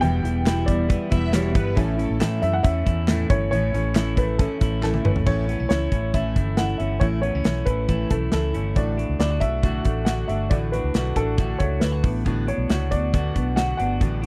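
Bright and nostalgic, this jangly indie pop excerpt moves at 137 BPM in A mixolydian, with a dark, woody upright piano carrying the melody over a full-bodied fingerpicked jumbo acoustic guitar and a twangy, slightly broken-up electric guitar playing arpeggios. A round, foam-muted fingered electric bass and an up-front modern studio drum kit with a tight kick drive the music, while a reedy, worn electric piano with phaser sits in the background until 5.3 seconds, alongside crisp group handclaps and a brief, lush, distant violin section playing a second line. The dry, close 1970s-style sound frames a drum fill at 4.8 seconds that moves the piece from Em and A into a passage that later turns to Bm7.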